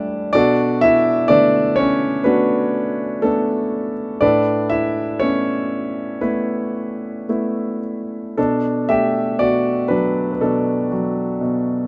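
A warm, smooth grand piano with a vintage, up-front tone plays alone in this short, reflective and wistful classical fragment, moving with rubato through Bm7 and Asus2 chords before a new section opens on Bm7 at 8.4 seconds, all set in a moderate studio reverb.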